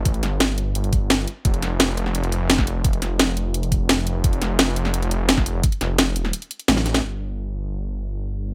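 A dry, up-front mix opens this short excerpt of dark, technical drum and bass at 172 BPM, aggressive and tense, where a thick, detuned sawtooth bass with chorus, tube saturation and sidechain pumping sits low between F1 and A1 for the whole 8.5 seconds. An overdriven electronic kit with a cracking snare, bright hats and toms runs alongside a knocking, tape-tinged kick that carries a small-room ambience. The kick drops out at 6.3 seconds, a drum fill lands just before the kit stops at 7.0 seconds, and the bass carries the closing section alone.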